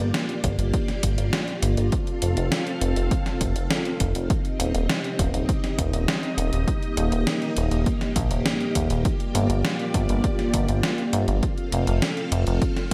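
A lush, slow-attack string machine ensemble and a glossy, nasal chorused pulse-wave synth bass, both pumping to the sidechain, open this moody, nocturnal synthwave excerpt over a Gm7, F, Cm/Eb, Eb progression, joined at 0.1 seconds by an overdriven, sampler-style 80s drum machine playing hi-hat and a gated-reverb snare and at 0.4 seconds by a punchy, analog electronic kick, every part sitting up front in a light reverb.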